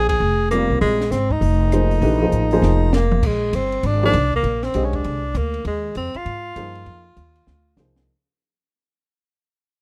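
A tenor saxophone with light vibrato and a smooth top carries the solo melody up front over a thumpy, woody pizzicato upright bass from the very start of this cool, hypnotic modal jazz cut at 198 BPM in swung 4/4, opening on a band accent and joined by a dark cocktail drum kit with a punchy kick, a high-tuned snare and a fill at 2.6 seconds, plus a warm baby grand piano with short sustain from 0.5 seconds, in a dry, rough home demo mix that fades out from 3.2 seconds.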